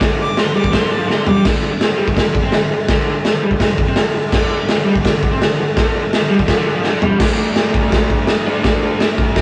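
A punchy, gritty drum kit sits up front in this rowdy, raw garage rock fragment, its medium-tuned snare, crashes, hi-hat and toms pumping in a bright stone room with a saturated, lo-fi sampler grit. An overdriven, double-tracked electric guitar picks a riff underneath the whole time. A clear, poppy harmonica takes a short solo over the opening until 1.4 s, its scooped notes sharpened by a touch of overdrive, while a drum fill carries the band into the next section. A vintage combo organ holds buzzy, lightly vibrato chords far in the background, dropping out briefly and returning at 4.3 s, and another drum fill at 6.8 s marks a further change of section. The rough rehearsal-room sound carries cassette-tape saturation and a moderate stone-room reverb, giving the short piece a raw, rowdy edge.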